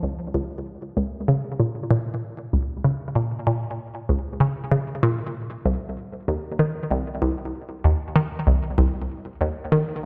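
A hollow, bouncy square-wave pluck with a fast attack and short decay plays alone up front in the low register, its chorus, phaser and tape echo blooming into a wet scoring-stage reverb for an expansive, luminous ambient fragment cut from a longer piece, tuned slightly flat to A4 = 438 Hz.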